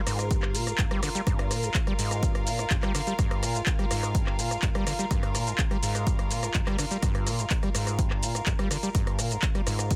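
A bowed string section with a reedy, gut-string tone opens this trippy, hypnotic acid house excerpt, sitting low in the mix and pumping against the sidechain over a sustained Gm7 in G phrygian at 125 BPM. A squelchy, resonant sawtooth acid bass riff arrives almost at once, its fast plucked attack roughened by overdrive, analog chorus and tape echo. A punchy analog drum machine with handclaps, hi-hat, rim click and shaker, joined at 0.3 seconds by an up-front electronic kick, drives the straight 4/4 pulse under light reverb and a dense, heavily limited master.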